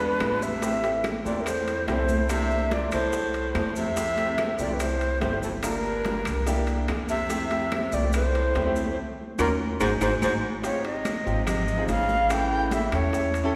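Bathed in the long reverb of a church or concert hall, this sunny, sophisticated Afro-Cuban jazz excerpt in F major moves at 144 BPM in straight 4/4, with a breathy, crisp-attacked flute carrying the vibrato melody over a soft, vintage-toned baritone saxophone second line, clear but worn short-sustain grand piano chords, a woody pizzicato upright bass, and a percussion bed of distant high-tuned congas, tight bongos, ringing metal-shell timbales, claves and grainy maracas, before a band accent from 9.0 seconds and a drum fill at 10.4 seconds lead into a Dbmaj9#11 chord at 10.6 seconds.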